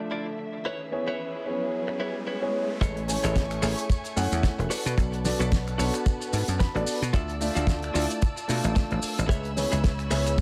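A lightly swung 111 BPM groove in 4/4 drives this groovy, feel-good nu-disco excerpt in A major, opening on a dark, boxy grand piano under a filter sweep and dub echo, veiled con sordino violin chords pumping under sidechain, a scooped, chorus-laden clean electric guitar riff and an electronic riser, before the drop at 2.8 seconds brings in a punchy, foam-muted thumbed slap bass, a tight up-front kick and a damped 70s kit of fat snare, hi-hat, shaker and finger snaps, with a guitar fill at 6.3 seconds in an echo-heavy small-room mix.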